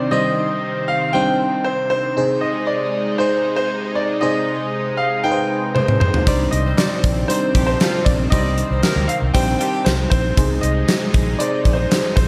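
Moody and dramatic, this 1980s-style pop passage in straight 4/4 is cut from a longer piece and sits in a big arena sound with concert hall reverb. An up-front concert grand piano carries the melody, polished and present with a digital delay, over a glassy FM electric piano whose bell-like attack is thickened with chorus and slapback echo. Beneath them, a lush unison pad holds detuned, warbling sawtooth chords with a slow attack, moving from Cmadd9 to Ab/C and back. At 5.8 seconds a drum fill brings in a gated 80s kit with a fat snare, tight kick, hi-hat, tambourine and toms in a bright stone room. At 6.3 seconds a round, punchy foam-muted bass enters, along with tight pop horn stabs in the background that drop out at 9.8 seconds. Faint group handclaps add a hollow, human touch to the percussion.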